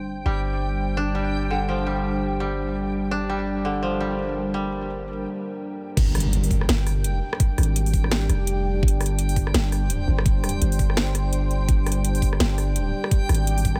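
A woody, dry koto sits up front, its fingerpicked arpeggios treated with dub echo over a tense, dark half-time drum and bass groove in G minor at 168 BPM, swung on the sixteenths. Beneath it, a deep, moody sawtooth pad holds sustained chords with chorus, reverb and sidechain pumping, while a mellow, sine-toned 808-style bass hums low and up front, and a reversed, granular texture swells dreamily high above. An electronic kit with a cracking snare, metallic hats, rim clicks and crash, its hats, cymbals and snare low-pass filtered and tape-tinged from a small room, carries the rhythm from the start. After a short break at 5.3 seconds, the drop arrives at 6.0 seconds with a background impact and a knocking, layered electronic kick pushed forward, as the koto falls away. The whole cut sits in a light digital ambience, a brooding fragment lifted from a longer piece.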